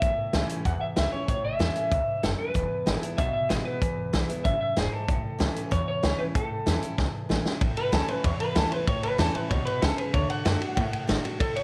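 A twangy electric guitar through a small old amp carries the melody up front, its bright, slightly broken-up tone touched with subtle chorus and tape echo, before moving into a clean solo at 7.6 seconds. This rollicking, retro rockabilly cut, taken from a longer piece, drives along at 190 BPM in a straight 4/4 feel in A major, moving from A to E, back to A, and on to D. A picked steel-string acoustic guitar fills out the accompaniment with a full-bodied dreadnought sound and audible finger squeak. An upright bass played pizzicato gives a woody, thumpy low end from gut strings. The vintage drum kit sits up front with a punchy kick, medium-tuned snare, hi-hat, and dark ride cymbal under a rolled-off top, and it plays a fill from 7.0 seconds into the solo, all within a small room ambience.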